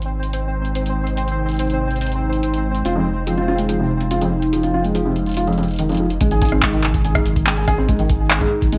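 Intricate and wistful, this IDM excerpt moves at 143 BPM in Ab major. A round, sine-toned sub bass, a booming analog drum machine of handclaps, metallic hi-hats and rim clicks, and a pulsing, tempo-synced triangle texture that plays until 6.2 s all run from the start, joined almost at once by a glassy, ethereal FM pad with ensemble chorus, phaser and reverb. A soft, felt-muted upright piano enters at 2.9 s with boxy, intimate arpeggios, audible action noise and digital delay, sitting up front over an Fm7 chord, and at 6.2 s the harmony returns to Ab as a deep electronic kick drum joins, all within a light digital ambience.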